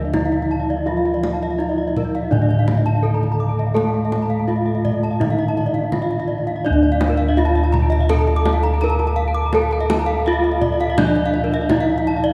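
Brilliant and hypnotic, this Balinese gamelan passage at 83 BPM in D pelog sets an airy, up-front bronze metallophone melody struck with a wooden mallet against a background metallophone accompaniment that drops out at 6.7 seconds, two shimmering horn-mallet metallophone arpeggio lines (both bright, one close and full), round beating bossed gongs carrying the bass, and a tight, vintage-sounding kendang, all cut from a longer piece and bathed in a cathedral reverb.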